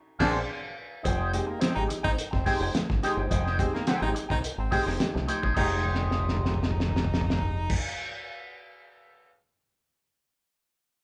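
A band accent on Bb9 opens this driving, cool funk excerpt in F minor at 106 BPM before settling on Fm9, with a muffled, cloth-damped drum kit up front, a punchy fingered bass and twangy wah guitar both through envelope filters, woody, slightly detuned upright piano stabs, a breathy baritone saxophone second line with light vibrato, and very quiet high-tuned congas entering at 1.3 s, all in a moderate large studio reverb as a live room band, until a drum fill from 5.9 s leads to the guitar continuing until 8.3 s and the gritty drums carrying on alone to 9.3 s.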